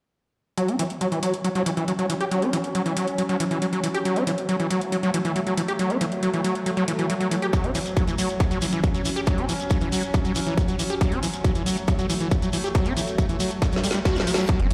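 This alien psychedelic trance excerpt opens at 0.6 s with a squelchy, screaming distorted acid riff, chorused, dub-echoed and pumping, over a drum and bass kit of woody snare and metallic hi-hats; an evolving, detuned wavetable pad of sustained, phased chords also pumps beneath it, before an overdriven electronic kick and a grainy shekere arrive at 7.5 s and a drum fill with a reverse cymbal leads to 14.5 s, where a faint bowed string section briefly enters, joined at 14.6 s by a round, deep analog bass, the mix sitting in a lush hall reverb.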